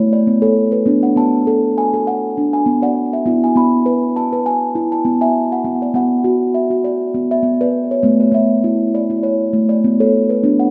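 A solo steel tongue drum, played with soft rubber mallets and placed up front, carries this gentle, hypnotic piece of meditative world music at 100 BPM in 4/4 with a light swing on the 16ths. Its round, ringing, dark tones span A3 to B5 and pass through A, D/B, E/B and Bm before returning to A at 8.0 seconds. A delay on the drum and a wet recital hall reverb surround this brief 10.7-second cut from a longer piece.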